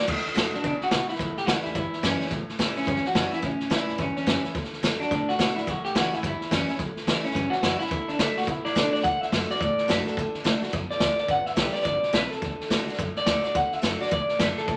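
Opening on a full-bodied, picked steel-string acoustic guitar, this rollicking, retro rockabilly excerpt with a swung feel quickly brings in a thumpy, woody upright bass sitting in the background and an up-front vintage drum kit with a punchy kick and dark cymbals, before a twangy, slightly broken-up electric guitar through a small old amp takes the melody at 0.6 seconds, heard in a wet studio reverb as the chords move between D and A7 and then reach G in the second section from 9.0 seconds.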